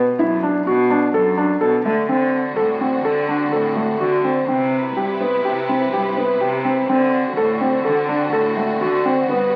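Playful and restless, this excerpt of contemporary chamber music moves at 125 BPM in an uneven 5/4 in D mixolydian, as a soft, felt-muted upright piano with audible action noise sets up intimate arpeggios from the start, a reedy gut-string cello bows the bass line close by in period style, and a clear, focused studio string section with vibrato joins at 2.1 seconds with sustained chords over D7 and Cmaj7, all heard through moderate scoring-stage reverb and the crackle of a very old 78 rpm record.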